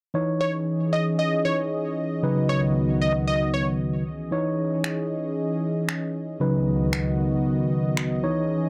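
A plucky unison lead carries the catchy, punchy melody in this bittersweet yet confident dance-pop excerpt, its bright, detuned sawtooth tone touched with vibrato and trailed by a dub echo from 0.4 to 3.7 seconds. Beneath it, a clean tine electric piano plays the accompaniment up front, heard through its built-in speakers. A smooth, mellow analog pad holds sustained chords with a slow attack and a chorus shimmer, moving between C#madd9 and B/C# in C# minor. At 4.8 seconds, shortly after the music moves into its second part, layered electronic finger snaps enter quietly. The piece sits at a steady 115 BPM in a straight 4/4, with a dark production and light reverb.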